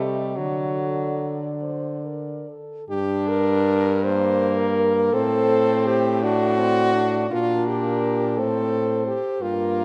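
Four French horns sound together from the start in this brief, melancholic and elegiac fragment of a classical horn quartet in G minor, moving in a rubato 6/8 at roughly 46-58 BPM through D, Gm, D7/A and Gm/Bb chords, with a new section arriving at 2.9 seconds. The melody horn sits distant and in the background with light vibrato, while the close-miked second line, also lightly vibrato, stands up front. A clear, soft-attacked, roomy accompaniment horn and a warm, smooth-topped bass horn complete the texture, all set in a moderate concert hall reverb.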